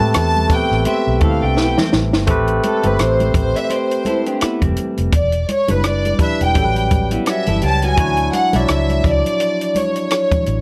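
This excerpt from a lush 1970s-style soul piece moves at 84 BPM in 4/4, with a 58% swing on the sixteenths and a tuning set to A4 = 437 Hz, giving it a silky, cinematic mood. A compact cocktail drum kit sits up front with a dry, natural sound, a high-tuned snare, tight kick, hi-hat and rim click, and it plays a fill from 1.6 to 2.3 seconds before the violin section takes its solo. Underneath, a vintage muted fingered electric bass is dark and round, while a barky tine electric piano, bright and lightly overdriven through a combo amp, supplies the accompaniment over chords moving from Am9 through Em7 and A13 to Dmaj9. The studio violin section carries the melody with light vibrato, bowed sul tasto in an intimate, close ensemble sound. Congas with a thick skin sit in the background, and an electric guitar through a small old amp plays a twangy, slightly broken-up picked riff from 0.9 to 8.2 seconds. 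Light studio reverb gives the mix a polished room.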